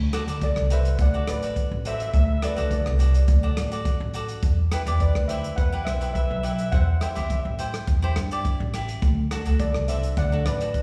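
A woody, thumpy upright bass opens this bouncy, festive calypso excerpt at 105 BPM in D mixolydian, joined at once by crisp picked cavaquinho with slapback echo and a tight soul drum kit of kick, hi-hat and rim click, before a shimmering, airy steel pan enters at 0.4 seconds to carry the lead melody over a D, E minor, C and D progression, all heard as a live gig through the venue's PA.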